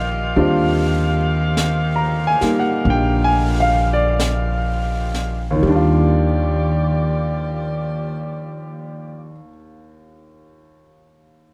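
Lightly reverberant, this tender, romantic jazz ballad excerpt sets a warm, smooth, vintage grand piano up front beside a woody, growly pizzicato upright bass, while a distant saxophone section holds clear, tight chords with vibrato, a brushed kit with a high-tuned snare plays from 0.4 to 6.3 seconds, and the piano continues alone after the bass and saxophones stop at 9.4 seconds.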